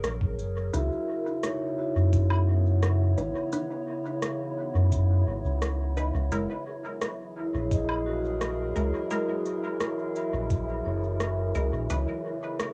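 A round, dark analog bass sits up front in this hazy, meditative ambient dub fragment, its detuned low tones anchoring the straight 4/4 groove. A muffled, thumpy electronic kick, pitched down and sampler-style, joins at 0.2 seconds, while electronic rim clicks, shaker and woodblock tick along through dub echo and cassette tape. A warbling, nostalgic pad holds sustained chords under metallic, ringing vibraphone arpeggios played with medium mallets, the vibraphone trailing tape echo and plate reverb. A filtered dub chord stab enters at 0.7 seconds with resonant, plucky hits coloured by phaser, analog chorus and dub echo, and an airy, breathy wind-like noise texture drifts in the background from 1.6 seconds. The harmony sways between F#9 and C#m9, and the piece carries the lo-fi character of a home cassette recording with light reverb.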